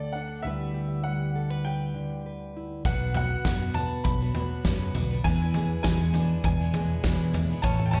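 Heard through a club PA in a small room, this uplifting indie folk fragment at 100 BPM opens with a clear, slightly detuned upright piano melody carrying slapback echo, a dark, full-bodied fingerpicked steel-string acoustic guitar and a round, punchy electric bass, before a natural country drum kit with a punchy kick, a jingly tambourine in the background and a picked archtop guitar join at 2.9 seconds, and a bright, twangy banjo adds arpeggios at 7.6 seconds.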